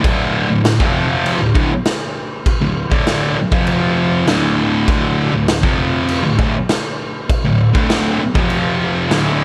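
A thick, fuzz-laden electric guitar and a raw garage drum kit start together, launching a swaggering garage rock riff in a straight 4/4 feel. The double-tracked, picked guitar sits up front with a bright, distorted bite, shifting between D5 and F5 power chords in its low register. The acoustic kit is saturated and gritty, with a punchy kick, a medium-tuned snare and a crash cymbal, all captured in a pumping stone room. A moderate reverb and the grain of cassette tape give the whole short cut a rough, live-in-the-garage character. The drums drop out at 9.2 seconds, leaving the guitar to ring on briefly before the fragment ends at 9.4 seconds.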